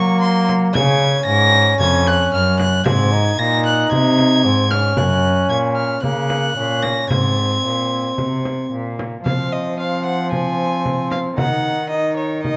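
In a straight 4/4 pulse, this stately, festive excerpt from a renaissance-style consort dance sets a single up-front violin, airy-bowed with a reedy gut-string tone, carrying the melody over a bright, distant solo trombone accompaniment and a rich, nasal cello bass, with a small, saturated frame drum played with soft hands joining at 0.5 seconds, all in a moderate recital hall reverb.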